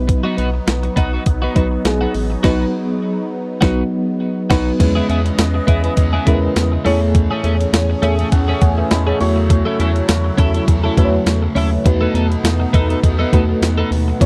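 A clean 12-bit drum machine with a thumpy kick, medium-tuned snare, hi-hat, tambourine and crash sets a 102 BPM, 4/4 groove with a light 16th-note swing, sitting up front over a rubbery, hollow square bass in this romantic, uplifting 1980s-style pop excerpt. A mellow FM electric piano with chorus and tremolo, a swirling phased analog pad and a compressed twelve-string electric guitar riff with analog chorus and tape echo fill out the harmony, with a band accent at 2.4 s and an electric piano fill at 7.7 s. From 4.8 s a crunchy overdriven guitar joins in the background as the chords move from C#m7/E through Amaj7/E and F#m7/E to B7/E, in a dry, close studio sound.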